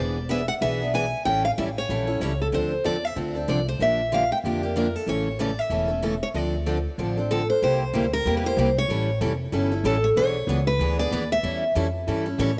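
Gypsy jazz at a swinging 188 BPM, this fiery yet bittersweet cut from a longer piece features a bright, squeaky-fingered concert steel-string guitar picking the melody up front. A boxy parlour guitar with fresh strings joins it up front, while a dark plugged-in parlour guitar sits in the background, all three carrying a cassette-tape tint. A woody pizzicato upright bass grounds the group through changes from E7 and A7 to Dm7 and Bb6. Everything is heard in a lush hall reverb on a home cassette recording with softened highs.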